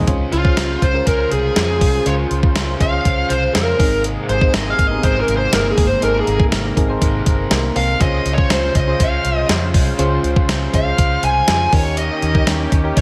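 This 1980s-style pop excerpt moves at 121 BPM in a straight 4/4 with a glossy, uplifting mood, as a dark, distorted lead guitar enters at 0.3 seconds to carry a bluesy solo up front over chords of Dbmaj7, Abadd9 and Eb7. Beneath it, a clean 12-bit drum machine with a thumpy kick, medium-tuned snare and hi-hat sits forward under gated reverb, while a round, foam-muted fingered bass holds the low end. Soft, mellow electric-piano-like synth keys with chorus, a lush, detuned unison pad treated with chorus and phaser in the background, and a very quiet, compressed overdriven rhythm guitar fill out the harmony in a lightly reverberant space.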